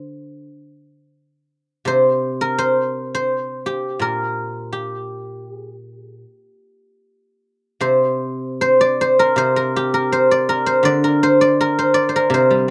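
Dry, close and open-air, this short extract of traditional Chinese music places a solo guzheng up front, its mellow, silvery tone ringing under the fingerpicks. The elegant, contemplative playing moves in a free, rubato 4/4 at roughly 74-87 BPM, ranging from a deep Bb2 up to D5. At 7.8 s the music turns to a new section that carries through to the end at 12.7 s.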